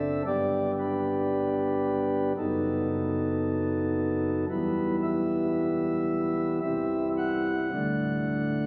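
A slow, straight 4/4 pulse at 56 BPM moves this serene, reverent chorale-style classical piece in G major, a short passage cut from a longer work. The pipe organ plays solo on soft flute stops, its romantic voicing spanning C1 to F#5 and sitting up front in the sound. The harmony moves from G at 0.3 s through B7/F# and Em to C at 6.6 s, then D. A long cathedral reverb with a 4.9 s decay surrounds the organ, and a club reverb is layered on top. Captured on a phone in the room and compressed, the recording keeps the organ's mellow glow close, with the space blooming behind it.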